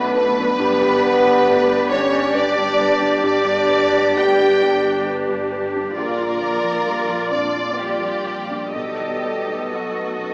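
A lush, vibrato-rich violin section carries the tender melody of this moving cinematic film-score excerpt in a rubato 3/4 at 66 BPM, shadowed by a focused second violin line, a smooth, even viola section, distant dark French horn chords, a mellow baby grand piano with audible action noise, a very quiet ringing harp playing arpeggios, and a woody cello section and double basses holding the bass, while an airy silver flute and a soft-attack clarinet add second lines from 0.6 s over chords moving from Bm7 through G and A# to B7, all set in a scoring-stage reverb with a small-speaker sound.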